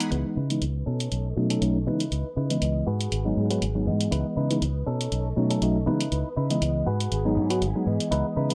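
A lightly swung 16th-note groove at 120 BPM in 4/4 drives this sensual, groovy filtered disco house excerpt in C# minor, with analog electronic hi-hat and shaker heard in a small room, and a dark, round, foam-muted fingered bass arriving up front at 0.1 s. A bell-like tine electric piano with phaser carries the accompaniment through C#m9, B9 and G#m7 chords, joined by a twangy, compressed clean electric guitar riff with vintage 12-bit sampler grit, while a lush, slow-attack string machine with ensemble chorus sits in the background. A filter sweep runs across the whole passage, and the mix carries light reverb.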